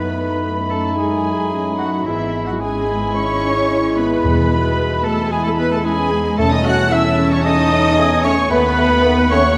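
Restless and urgent, this classical excerpt in E major moves at 112 BPM in a straight 4/4, with a lush, bowed violin section carrying the melody while a second violin line, a clear oboe, a dark clarinet and a hollow, very quiet flute add second lines. Beneath them a mellow bassoon and a rich viola section accompany, a clear trombone section and a distant French horn section hold sustained chords, a clear trumpet punctuates with stabs, and cello and double bass sections anchor the bass. Soft-mallet timpani with a round tone enter at 4.2 seconds and stop at 7.1, all set in a moderate scoring-stage reverb.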